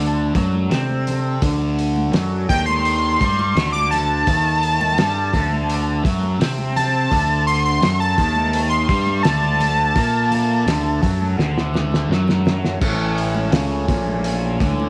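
Lightly reverberant, this mysterious, hypnotic psychedelic rock excerpt features a bold, detuned sawtooth synth lead, octave-doubled with chorus and slapback echo, soloing up front until 11.3 seconds over a bright, double-tracked fuzz guitar riff with phaser, an overdriven, saturated picked electric bass, a reedy, breathing pedal harmonium in the background, distant high-tuned congas, and a muffled, lo-fi, cloth-damped drum kit with a fat snare that plays a fill from 11.4 seconds.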